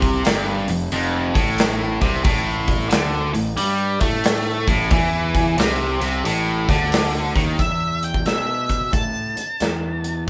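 A swung 4/4 groove carries this smoky, heavy excerpt of blues rock and southern rock power-trio playing, with a biting, bright, double-tracked overdriven guitar riff up front over a dark, round, fuzzed electric bass and a big acoustic rock kit with a punchy kick and medium-tuned snare, until at 7.6 s the riff guitar drops out and an octave-fuzz lead guitar takes over the melody with a distorted edge, the trio sounding like a band playing live together in one room under moderate studio reverb.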